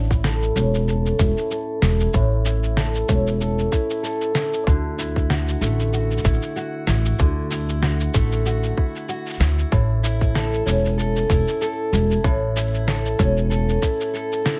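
A fingerpicked steel-string acoustic guitar plays arpeggios in this playful folktronica excerpt, its fresh-stringed lines carrying audible finger squeak through a low-pass filter sweep and digital delay, moving from A to Dadd9 at 4.7 seconds and back to A in A major. Beneath it, a woody, thumpy upright bass plays pizzicato up front, while a tight, overdriven electronic kick and a muffled, pitched-down sampler-style shaker and fat snare, compressed and tape-warm, set a swung 16th-note groove at 95 BPM. The mix is dry, with little reverb, and the piece is cut from a longer work.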